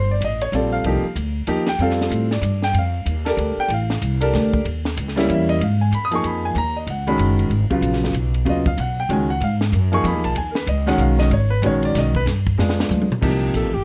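Lightly reverberant, this excerpt of modal jazz in a swinging three has a searching, hypnotic mood. A warm, up-front grand piano lays down chords while a woody, growly pizzicato upright bass anchors the low end. A dry cocktail drum kit with dark cymbals, a high-tuned snare and a punchy kick sits further back and plays a fill at 12.6 seconds, just before a breathy, mellow alto saxophone with light vibrato and scooped notes enters at 13.6 seconds.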